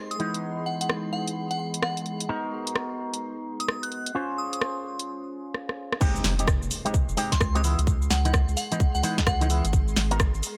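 Swung two-step UK garage drums with a cracking snare and warm hats drive this late-night, bouncy clip, where a silky, warbling string machine pumps in the background under a filter sweep, a dark, clean electric guitar with an envelope filter plays stabs and a crystalline FM synth bell carries the melody, until a break and drum fill give way at 6.0 s to a drop with a tight electronic kick and a very quiet impact, joined at 6.2 s by a thick, saturated sub bass.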